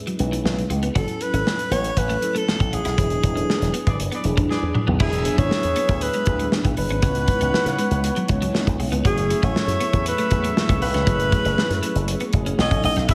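Polished 1980s jazz-funk pop with a nocturnal, urban mood, moving at a straight, steady stride in four. A mellow tine electric piano sets the chords from the start, colored by analog chorus and slapback echo, while a dark, clean electric guitar picks a riff in the background through ensemble chorus. Underneath, a smooth studio drum kit with a medium-tuned snare and a tight kick sits up front with a rolled-off top, and a bright, punchy slap bass runs through an envelope filter. From 1.0 s a breathy, close-miked alto saxophone carries the melody in an intimate, whispered jazz style, with vibrato, soft attacks and scooped notes. A horn section with light vibrato and a smooth top joins at 3.9 s as a second line, in the middle of a run of band accents that began at 3.0 s and is capped by a drum fill leading into a new section at 5.0 s. The mix has a big arena feel with a moderate hall reverb, and the passage is cut from a longer piece.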